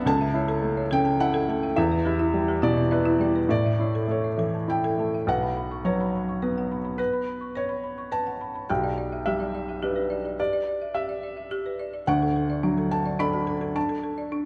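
A felt-muted upright piano, soft and intimate up front, carries the accompaniment in this melancholic, fragile neoclassical excerpt in B minor at a rubato 106 BPM in 3/4, while a woody, rustic folk marimba struck with hard mallets plays arpeggios through tape echo, both set in a wet concert hall reverb as the harmony shifts from A/C# and Em7 to Bsus2 at 5.3 seconds and closes on D at 12.1 seconds.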